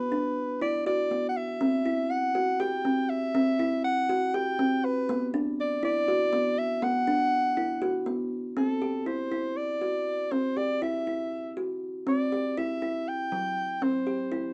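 Contemporary instrumental music in a restless 7/8 metre with a straight feel sets a pensive mood in this short cut from a longer piece. A mellow soprano saxophone carries the melody from start to finish, played solo and up front in a jazz style with light vibrato, scooped notes and a smooth top. Beneath it, a kalimba spins arpeggios throughout, its plucked notes woody and hollow-boxed, short and thumbnail-picked, with a vintage, band-limited character that also sits up front. The harmony moves from Bm to C(#11) and back, then settles onto a rootless Am7 as a new section opens at 8.6 seconds. Light reverb and a dark production give the whole a gentle, intimate glow.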